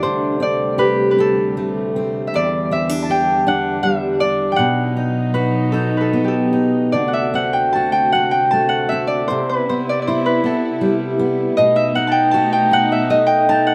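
Celtic folk in the manner of a slow air, this mournful, haunting passage moves in a free, rubato 6/8, cut from a longer piece. A Celtic harp carries the melody up front, its fingerpicked notes ringing with a short slapback echo. Beneath it, a fingerpicked steel-string acoustic guitar with fresh strings gives a full-bodied accompaniment, also close in the mix and touched by the same slapback echo. Further back, a dark chamber string section holds sustained, bowed chords with light vibrato, a soft attack and a smooth top. All three parts play throughout the 13.7 seconds, moving through harmonies such as D7sus4, Em7, Cmaj7 and B7. The sound is dry and open-air, with little reverb and an intimate closeness.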